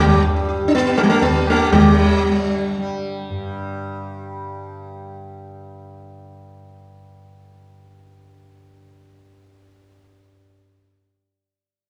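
A plectrum-plucked sitar and a softly plucked tanpura open this meditative, serene fragment of Hindustani classical music, set in a straight 4/4 at 121 BPM and tuned to A4 = 439 Hz. The sitar sits up front with a round, buzzing tone haloed by sympathetic strings, carrying the melody between G3 and G4. Beneath it, the tanpura's bright, shimmering drone sustains the ground from G2 to G3. A low-tuned tabla with a short ring joins briefly at 0.7 seconds, sounding distant, as though placed deep in a large room. After the sitar stops at 5.2 seconds, the tanpura carries on alone until 10.4 seconds, wrapped in a wet recital-hall reverb within a dark, warm production.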